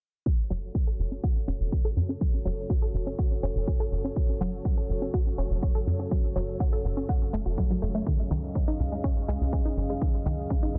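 A dense, heavily limited modern master with a low-pass filter and digital ambience frames this dark, melancholic melodic techno excerpt at 123 BPM in a straight 4/4, moving from F#m to C#add9 at 8.1 seconds. A punchy, tape-kissed electronic kick and a tight, driving sawtooth sequencer bass sit up front, both starting near the top, while a nasal, bright analog pluck spins arpeggios through chorus, phaser and delay, and a filter sweep runs across the bass and arpeggio for the whole passage. Beneath them, a deep, moody analog pad holds sustained chords and a mellow, warbling analog drone hums in the background, all three synths pumping to the sidechain, before metallic electronic hi-hats slip in faintly at 8.3 seconds.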